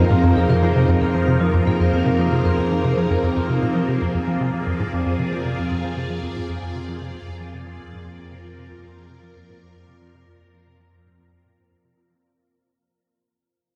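Hypnotic and mysterious, this brief cut from a longer piece of ambient, sequencer-driven space music in F dorian moves at a straight 115 BPM over a single Fm7 chord, where a tight, punchy sawtooth-and-square sequencer bass riff with ring modulation and delay drives beneath swirling, vintage phased string-machine chords, a mellow detuned analog drone hums in the background, a bubbling, resonant stepped-filter texture shimmers throughout, and a metallic, ringing vibraphone plays delayed arpeggios only until 3.9 seconds, all bathed in a dark, huge ambient reverb and fading out across its 12.2 seconds.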